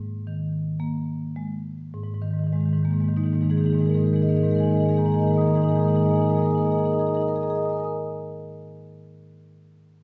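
A lone marimba played with medium mallets opens on a G#sus2 chord and slows over the first 1.9 seconds, setting a reflective, hypnotic tone in this contemporary classical fragment cut from a longer piece. The playing moves with a free rubato feel across a span from G#2 to D#6, and a new section begins at 1.9 seconds. The marimba itself sounds full and close-miked, with a warm, up-front body, while a recital hall's reverb places the listener further back in the room.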